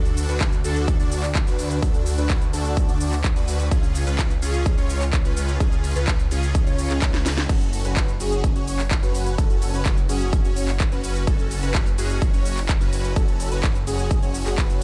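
A digital ambience frames this euphoric, powerful stretch of festival progressive house, cut from a longer piece and moving at 127 BPM in a straight 4/4 in F# harmonic minor. Huge, detuned supersaw chords carry the riff in a lush chorus with a moving notch, sidechain pumping and digital delay, their sustained sawtooth unison sitting between C#4 and D5. Beneath them a thick, saturated detuned saw bass with a sine underlayer holds the low end from F#1 to D2, pumping with the sidechain and sitting up front. A punchy, tape-warm electronic kick, re-recorded in a large room, drives the groove from 0.4 seconds, while an overdriven house kit adds a cracking snare, bright hats, shaker, handclaps and crash cymbal. The harmony moves from D to C# before a drum fill at 7.1 seconds lands on F# minor.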